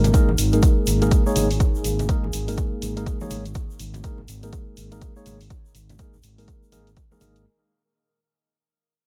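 A digital ambience surrounds this short deep house cut, which fades out across its whole span, from 0.0 to 7.5 seconds. At 123 BPM in 4/4 with a 61% swing on the sixteenths, the mood is relaxed and warm, resting on a single Ebsus4/Ab chord. A punchy, layered electronic kick sits up front from 0.1 seconds, beside an overdriven fingered electric bass holding Ab1 with a round, amped tone and sidechain pumping. A mellow tine electric piano plays clean, direct stabs between Ab3 and Db5, also pumping with the sidechain and trailed by dub echo. Beneath them, a very quiet, deep and moody pad of detuned sawtooth and sine layers with a sub octave sustains chords from 0.4 seconds, slowly evolving under chorus and its own reverb. An analog-flavoured electronic hi-hat fills in the groove, while soft-handed congas with a ringing, dry character and a grainy, bright egg shaker sit in the background.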